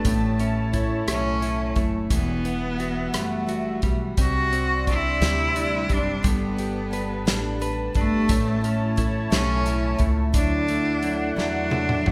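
Melancholic and aching, this excerpt from a slow six-eight pop ballad moves at 58 BPM in a straight 6/8 feel, tuned slightly high to A4 = 441 Hz. Up front and close, a single bowed cello carries the melody with a bright, biting, nasal tone, vibrato and an airy bow that gives the line an intense edge. Beneath it, a clean, compressed electric guitar recorded direct picks out a bright accompaniment, while a picked dreadnought acoustic guitar with fresh strings sits in the background playing full-bodied arpeggios, with the occasional finger squeak. A smooth analog pad of detuned sawtooth chords, softened by chorus and a slow attack, sustains underneath, and a woody pizzicato upright bass anchors the low end. A loose indie drum kit with a tight kick, medium-tuned snare, hi-hat, rim clicks and toms sits prominently in the mix and closes with a fill from 11.4 to 12.1 seconds, over a progression of A, Emadd9, Csus2, Gadd9, A and Dadd9, all bathed in a moderate reverb that suggests a church or concert hall.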